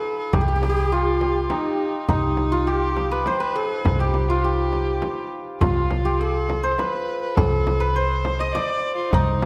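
A festive Persian modal ensemble piece at 102 BPM in 3/4, set in C avaz esfahan, in which a bright, shimmering hammered santur carries the melody up front while a lone bowed kamancheh adds a clear, biting second line with light vibrato and portamento; a woody, growly pizzicato upright bass holding low C, a deep frame drum played with soft hands and a very quiet tombak all join at 0.3 seconds, everything sitting within the moderate reverb of a scoring stage.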